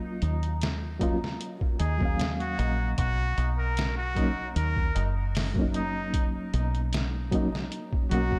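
Trip hop at 76 BPM in a melancholic, cinematic mood, cut from a longer piece, where a reedy, slightly out-of-tune electric piano with fast tremolo and tape echo moves from Ebm7 to Bmaj7 over a dark, round, foam-muted fingered bass, joined from 0.2 seconds by a gritty, pitched-down sampler-style kit with a thumpy kick and distant high-tuned tabla, until a breathy, nasal straight-muted trumpet carrying 12-bit sampler grit and tape echo enters at 1.8 seconds with an intimate jazz-style solo, all bathed in a dreamy hall reverb.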